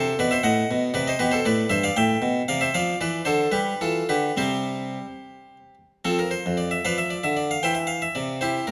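Radiant and flowing, this short excerpt from a baroque-style suite movement is cut from a longer classical piece for solo harpsichord. In 6/8 with a rubato feel, the harpsichord plays alone throughout, ranging from F2 up to G5. Its tone is airy, bright and plucked, in the French style, on a single set of strings, and it sits up front in the sound. Close, detailed microphones catch each note clearly, while a moderate recital hall reverb adds a sense of space around the instrument. The phrase restates its opening material at 6.1 seconds and settles on a C major chord at 7.6 seconds.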